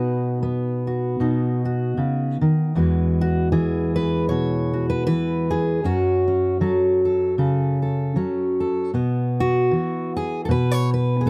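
A lone fingerpicked steel-string acoustic guitar opens on a B chord, setting a warm, nostalgic folk mood in an unhurried 4/4 with a gentle swing to the eighth notes. At 2.8 seconds the harmony moves to Eadd9, then drifts through F#m and Bsus4 before settling on a bare B5 near the close. The guitar covers a generous span, from a deep low E up to a high C#, so its jumbo body and full-bodied tone fill the sound on their own. Close, detailed microphones place the instrument up front in a dry space with little reverb, bringing out every picked string. The passage is a short cut from a longer piece, ending at 11.3 seconds.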